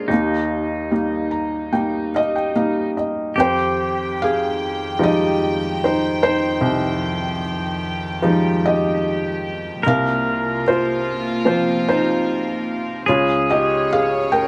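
This acoustic folk-pop ballad in F minor moves at an unhurried 74 BPM in a straight 4/4, with an intimate, reflective mood, and is cut from a longer piece. A felt-muted upright piano carries the melody up front, its mellow, muffled tone coloured by thin felt and audible action noise, and it adds a gentle fill from 0.9 to 3.4 seconds. Beneath it, a clean, compressed pedal steel guitar played with fingerpicks traces a second line, its slide and volume swells lending a warm electric shimmer. At 3.4 seconds a dark studio string section enters with sustained, bowed chords played sul tasto, their soft attack giving a pure, floating ensemble sound. The harmony moves from Eb through Fm9 and C7sus4 to a rootless Bbm7/Db, all set in moderate studio reverb and captured with close, detailed microphones.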